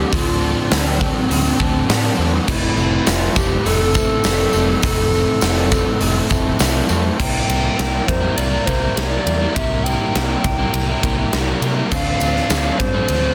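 Shoegaze and dream pop rock at 102 BPM, brooding and hazy, where a reedy, warbling FM lead with chorus and analog delay carries the melody over a slightly broken-up lo-fi guitar riff drenched in reverse reverb, a dark overdriven semi-hollow guitar riff with analog chorus, a round foam-muted fingered bass, and a huge, up-front arena drum kit with a punchy soft-clipped kick and bright cymbals, while a jingly tambourine sits in the background from 2.5 to 7.0 seconds and again near the end, all moving from Dm7 through Fmaj7 and C7 back to Dm7 in a dense, heavily limited master.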